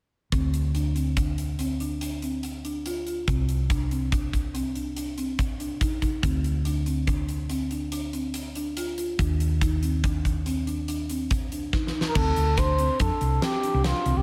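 A breathy, whispered trumpet with vibrato enters close and up front at 12.1 seconds, its dark jazz-style solo trailed by digital delay, as a drum fill draws to a close. Beneath it, this tense, intricate progressive instrumental in 7/4 is driven by a huge arena drum kit with bright cymbals, a fat snare and a punchy kick. A round, hollow-body electric bass and woody soft-mallet marimba arpeggios fill out the sound in light reverb.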